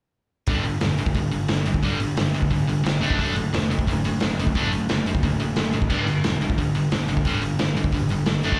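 A distorted electric guitar sits up front with a scooped, compressed, picked riff over G5, D and back to G5 in this rowdy, rebellious punk rock excerpt at 177 BPM in a straight 4/4. A growly, fuzz-soaked picked electric bass and a raw garage drum kit, with a punchy kick, medium-tuned snare, hi-hat and crash under a rolled-off top, drive alongside it from 0.5 to 8.6 seconds. It sounds like a live club gig heard through the venue's PA, with light reverb.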